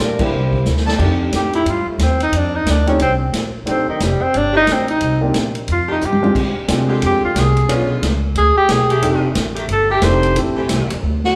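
Energetic and brassy, this big band swing excerpt moves at 179 BPM in F mixolydian, opening with a band accent as a warm saxophone section states a brief melody over woody pizzicato upright bass, a concert grand piano with deep bass, and a roomy, distant drum kit with punchy kick, while a trumpet section lands a single stab at 0.9 seconds. From 1.4 seconds a clear tenor saxophone takes an up-front solo with light vibrato and scooped notes, and an edgy saxophone section returns with sustained chords from 4.5 seconds, moving through chords such as F13, Bb13 and Bdim7 after a drum fill around 6.0 seconds. A large studio reverb places the band further back in the room, lending the whole a live, spacious feel.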